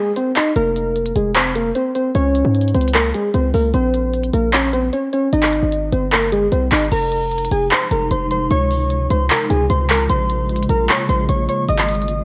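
Half-time trap drums at 151 BPM, with crisp hi-hats, handclaps and crash cymbal from an organic electronic kit, drive this melancholic, menacing F minor hip hop excerpt, as warbling, detuned lo-fi synth keys carry a nostalgic melody with chorus and cassette-tape coloring. A punchy, heavy 808-style bass joins at 0.6 s, and a dark, blurred granular cloud pad enters at 7.4 s with evolving sustained chords, all on a home cassette recording in light reverb.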